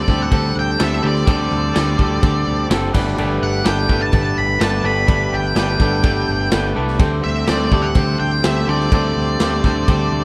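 A dark, fuzzed-out lead guitar carries the melody in this short indie rock excerpt, its distorted octave tone riding high over an upbeat yet wistful groove in straight 4/4. Beneath it, two picked electric guitars share the riff duties: one recorded direct, bright and compressed with a lush chorus shimmer, the other clean and twangy. A growling, overdriven electric bass anchors the low end, while a big acoustic rock kit, distant and roomy with a punchy kick, a medium-tuned snare and crash cymbal, comes in at 0.1 seconds and plays until 10.0 seconds. Very quietly in the background, an evolving pad of detuned sawtooth and triangle tones with a sub octave holds soft-attack chords, shaped by a filter swell and a long release. The harmony moves from D7sus4 to Gadd9 at 2.9 seconds and back to D7sus4 at 7.0 seconds, and the mix stays dry overall.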